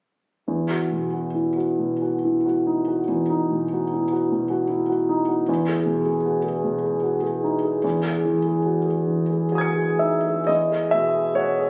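Caught on a phone in a recital hall, the recording carries a moderate reverb of about 1.5 seconds and a studio ambience around the instrument. It is a serene, hazy piece of impressionist classical music for solo grand piano, cut from a longer work and moving in a flexible, rubato 6/8. The piano sits up front, clear and intimate, with audible action noise and a long sustain that give its polished tone a present feel across a range from E2 to C#7. The harmony drifts from Esus2 to Emaj7 at 5.5 seconds and then to C#madd9/E. At 10.5 seconds a new section settles on a plain E chord, and the piano stops at 11.7 seconds.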